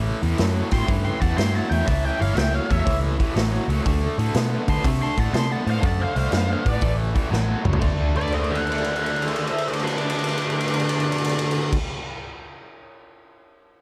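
Raw and gritty, this swaggering blues rock and southern rock cut from a longer piece drives along at 121 BPM in D mixolydian with a swung feel, led by a bright, double-tracked overdriven guitar riff with tremolo and a round, foam-muted vintage bass from the start. A boomy, saturated garage drum kit in a pumping stone room comes in at 0.2 s with crash, ride, hi-hat, snare and toms, and fills that run from 8.1 s to 11.7 s once the chords move from A7 and D7 toward D13. From 0.7 s an octave-fuzz lead guitar with wah and plate reverb carries the melody, joined by a dark, smooth overdriven second guitar line set in the background with analog delay.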